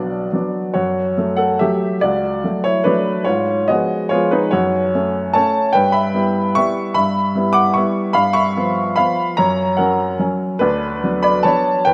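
A lone upright piano opens this wistful, nostalgic classical waltz in 3/4, its clear, woody tone slightly detuned and placed up front, with long sustain across a range from B1 to D6. The beats stretch unevenly with a rubato feel as the harmony drifts from Bm through F#m and a diminished chord, then moves through Em/G and G7 to F# before landing on Bm/D near 10.6 seconds. A wet concert hall reverb surrounds the playing, and the passage is cut from a longer piece.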